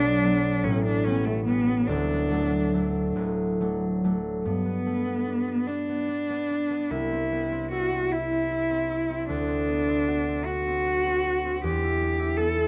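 In a 6/8 taken with free rubato at about 46-54 BPM per dotted quarter, this romantic classical duo for cello and harp unfolds in a lyrical, serene mood, cut from a longer piece. A single bowed cello carries the melody between A3 and A4, its tone clear and focused with a singing vibrato, placed up front. The concert harp accompanies from the deep D1 up to F#4, fingerpicked and acoustic, with bright, ringing strings that sit just as close. The harmony opens in D major, moving through Bm, A9 and D, then shifts to G major at 4.5 s, where G, Cmaj7, D7 and Em carry the passage to its close at 12.7 s. A light reverb surrounds the pair, and the dark, warm production keeps the top end below 7.6 kHz.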